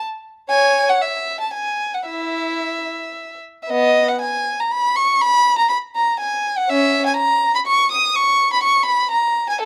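Flowing and serene, this short cut from a longer baroque-style suite movement for unaccompanied violin moves in 3/4 at 110-126 BPM with a supple rubato feel, settling in E major before shifting to B major at 3.7 s. A single bowed violin sits up front from 0.5 s to 9.7 s, spanning B3 to D#6 with a warm, expressive tone, vibrato, soft attacks and graceful portamento. Light reverb lends the performance an intimate sense of space.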